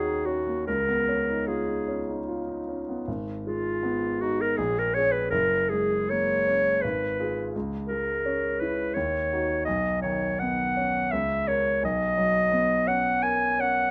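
A clarinet and a concert grand piano begin together in this hazy, wistful impressionist duo, a fragment cut from a longer classical piece in G# dorian. The clarinet carries the melody up front, its soft attack and smooth top lending the line a gentle, songlike classical poise. Beneath it, the piano's accompaniment sounds intimate and vintage, with deep bass and the noise of its action audible close by. The music sways in a rubato 3/4 at roughly 73-86 BPM, drifting through minor-seventh, minor-sixth, ninth and added-ninth colours such as D#m7, G#m6 and F#add9. A new passage opens at 3.1 seconds and carries on until the fragment ends at 13.9 seconds, settling on a Bmaj9 chord, all wrapped in a light reverb.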